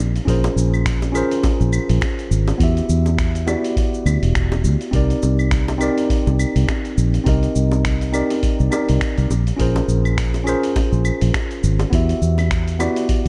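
Smooth and wistful, this sunset chillout excerpt rides a swung sixteenth-note feel in 4/4. A round, foam-muted fingered electric bass sits up front from the very start, playing low in its register. A worn, slightly out-of-tune tine electric piano joins at 0.3 seconds, clean and direct, its chords carrying a touch of delay as they move through Bbm9, Em9 and Cm9 before circling back to Bbm9. Underneath, a gritty, compressed sampler-style soul drum kit, re-recorded in a large room, supplies cabasa, claves, finger snaps and hi-hat, while a deep analog electronic kick adds tape-warm weight. Tight, high-tuned bongos struck with hard hands sit in the background, and light reverb frames a dark, warm production.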